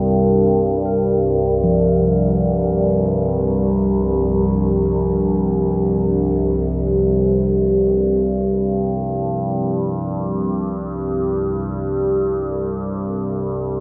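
Floating in free time with an unmeasured pulse, this dark ambient drone is a short excerpt cut from a longer piece, and its mood is unsettling and cavernous. Up front, a low drone spanning C2 to G2 sounds across the full 13.8 seconds. Its sawtooth, sine and triangle tones pass through ring modulation, and its resonant overtones move and sweep while the sound sustains with a slow attack, long release, chorus and its own built-in reverb. Set in the background, a quartz singing bowl, struck with a suede striker, plays meditative arpeggios with a pure, full, ringing tone and slow beating, heard close-miked and dry but trailed by tape echo. The bowl falls away at 8.7 seconds, leaving the drone alone in the closing stretch. A huge, wet reverb with an 8.6-second decay surrounds the production, and the overall sound is dark and warm, tuned slightly low to A4 = 438 Hz.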